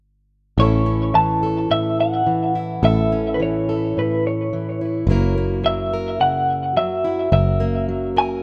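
A rough home-demo mix with a faint mains hum and light studio reverb frames this nostalgic folk fragment at 107 BPM in A major, where a clean, compressed semi-hollow electric guitar carries the melody through tremolo and digital delay over a dark, full-bodied fingerpicked plugged-in steel-string acoustic guitar and a round, foam-muted picked electric bass, all three playing from 0.6 to 8.4 seconds as the harmony moves from A to F#7 at 5.1 seconds.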